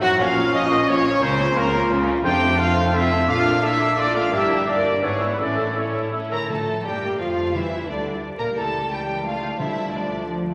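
A fast, restless romantic orchestral excerpt in 3/4 at 175 BPM opens with an up-front, clear trumpet section stabbing over a lush violin melody, supported by a second violin line, airy flute, mellow clarinet, quiet bassoon and viola, distant French horns, ringing harp arpeggios, and cello and double bass, before the trumpets fall away at 6.1 seconds and hard-mallet timpani enter at 6.5 seconds as the music turns toward D minor, all set in a reverberant concert hall with vinyl crackle.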